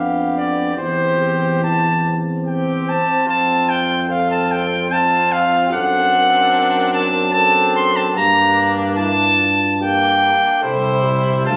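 From the first moment, a classical brass quintet plays a noble, warm passage at a stately 73 BPM in 3/4, with a mellow, up-front cornet carrying the melody over a clear trumpet second line with light vibrato, a dark French horn and a trombone with vibrato in the accompaniment, and a tuba anchoring the bass, all heard through the moderate reverb of a recital hall as captured on a phone in the room.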